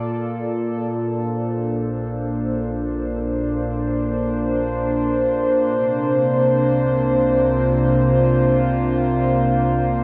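A warbling, lo-fi pad of detuned sawtooth and triangle tones sits up front from the start, holding sustained Bbmaj7 chords in free time with chorus and its own reverb, while a very quiet, mellow analog drone with moving pulse-width shading sounds a Bb only until 1.0 s. From 1.7 s a dark, rumbling, wave-folded bass drone settles deep in the background beneath the pad, and at 5.7 s the harmony shifts to C9sus4. This serene, luminous ambient fragment in Bb major, cut from a longer piece, floats in a wet echo-chamber reverb that gives it a nostalgic, warm glow.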